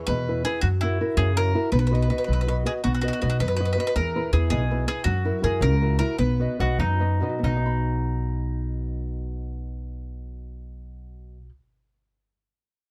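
A small, boxy nylon-string guitar opens this lively, romantic Italian folk serenade in B major, fingerpicked with audible finger squeak at roughly 91-110 BPM in 6/8, as an up-front upright bass plucks woody, dark steel strings underneath and a warm bowl-back mandolin, picked on its double strings and set in plate reverb, carries the melody while the tempo slows from 5.1 s, before a bright second mandolin takes up a quieter line from 6.6 s, the whole passage cut from a longer piece and captured in a dry, mellow production with faint mains hum.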